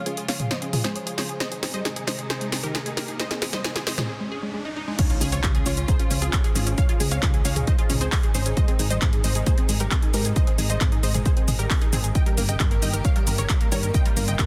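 Uplifting trance at 134 BPM in Ab major, this euphoric excerpt opens on a build-up in which a tight, driving sawtooth arpeggio synth sweeps through a filter, a detuned unison pluck carries the melody with chorus and delay, smooth bowed symphonic strings hold sustained chords with a touch of 12-bit grit, and a round, mellow FM bass anchors the low end, all four pumping against the sidechain. A punchy, tape-warm analog drum machine plays a fill of snare, claps, toms, hats, shaker and crash, while a background riser climbs from 1.5 seconds into a brief break. At 5.0 seconds the drop lands with an impact as a heavy, layered kick enters up front, driving the dense, heavily limited mix over a Db, Ab and Eb/G progression.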